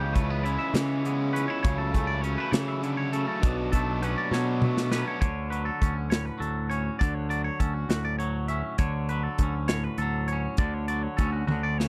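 An up-front, overdriven electric bass growls through this restless, intricate slice of math rock and midwest emo, anchoring the low end for the full 11.9 seconds at 67 BPM in a straight-feel 6/8. Two bright, clean, twangy electric guitars share the upper space, one picking chordal accompaniment while the other spins high arpeggios through chords moving from C#m7 to F#m7/C# and Bm9. A raw, double-tracked garage guitar adds a picked, overdriven riff in the opening stretch, dropping out at 5.2 seconds as the harmony settles onto Dmaj7 for the second half. A polished acoustic drum kit with a tight kick, medium-tuned snare and toms enters at 0.2 seconds, sounding airy yet close, and marks each half's close with a fill, the first at 4.3 seconds. The overall sound is dry and intimate, with a close 1970s-style studio character and very little reverb, and the passage is cut from a longer piece.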